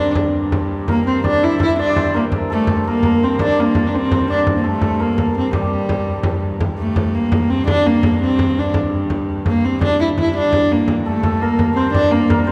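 A viola da gamba carries the melody up front, its bowed, fretted tone nasal and floating with light vibrato, a soft attack and an airy edge, moving between G3 and E4 through the whole excerpt. This is a mysterious, ancient-sounding medieval dance in G dorian, set in a straight 6/8 at 112 dotted-quarter beats per minute and cut from a longer piece. A hammered dulcimer plays a shimmering second line higher up, from G4 to E5, dropping out at 8.7 seconds and returning at 11.1 seconds. Beneath them a reedy hurdy-gurdy holds a close drone on G2 in the background, while a frame drum enters at 0.2 seconds and sits up front. The performance was recorded in a church or concert hall, and a long, wet church reverb lets the ensemble ring through the space as the same melodic section is heard twice.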